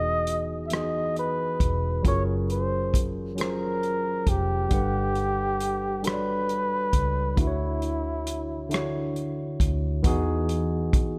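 A slow, straight six-eight R&B sway, carried from 0.3 s by a dark soul drum kit of hi-hat, punchy kick and rim click, sets an intimate, tender mood in this short cut from a longer piece. A breathy, close-miked flugelhorn sings the jazz-style solo melody up front with mellow vibrato and a slapback echo, resting at 9.2 s. Beneath it, a worn, slightly out-of-tune tine electric piano voices lush major-ninth chords through its built-in speakers, while a round, foam-muted vintage electric bass anchors the low end under light reverb.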